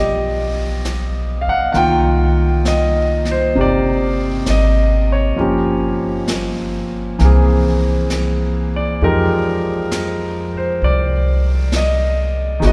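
A clear, up-front grand piano with long sustain and a woody, thumpy gut-string upright bass played pizzicato open this late-night, romantic jazz ballad at 66 BPM with swung eighths, joined at 0.8 s by a brushed drum kit sitting lower in the mix on snare and hi-hat, as the harmony moves from G7b13 through Cm11 and Gm7b5 to Fm9 inside the lush, lingering reverb of a church or concert hall in this short cut from a longer piece.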